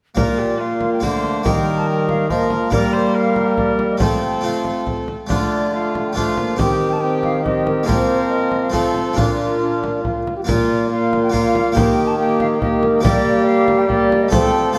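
Courtly and festive, this renaissance-style consort dance in Bb major moves at 140 BPM in a straight 3/4, tuned to A4 = 436 Hz, with a mellow, hollow silver concert flute carrying the melody over a viola's reedy gut-string second line, a dry, full harpsichord entering at 0.1 s, soft-attack trombone, a distant, lightly vibrato bassoon on the bass, and a deep frame drum, all set in a recital hall reverb as the opening section repeats at 10.5 s in this cut from a longer piece.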